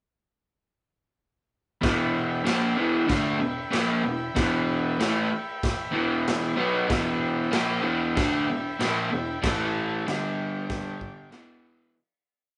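Recorded live in one room with light reverb and a rolled-off top, this swaggering, gritty garage rock piece in E minor stomps along at 95 BPM as a crunchy, double-tracked electric guitar power-chord riff sits up front from 1.8 s, a raw acoustic kit with a punchy kick, medium-tuned snare, dark cymbals and a pumping small-room sound drives the garage stomp groove, and a buzzy vintage combo organ with light vibrato holds triad chords in the background before a fade-out begins at 9.4 s.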